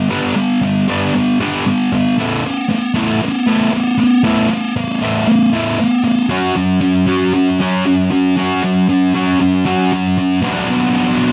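Rock at 116 BPM in A major, this carefree, upbeat fragment cut from a longer piece features a lone thick fuzz guitar, bright, picked and double-tracked, playing up front through the whole 11.3 seconds over G, Asus2, F#5 and Bm chords in a dry, close 1970s-style studio sound with moderate small-room reverb.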